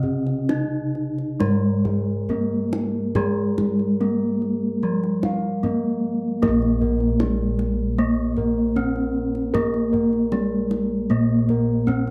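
In a straight 4/4, this ceremonial Javanese gamelan passage, cut from a longer piece, moves from one section into another at 6.4 seconds. Two bronze metallophones sound throughout, one carrying the melody and the other an accompaniment line beneath it. Their paired tuning produces shimmering beats: one is struck with a wooden mallet and sits up front, while the other, played with a horn mallet, rings out brighter. Two sets of bossed gongs fill out the texture, one spinning arpeggios above and the other anchoring the bass. One set sounds mellow and soft under padded beaters, while the other gives round, beating bronze tones. A deep kendang, played with soft hands, keeps the pulse underneath, and the dry, close 1970s-style studio sound carries only light reverb.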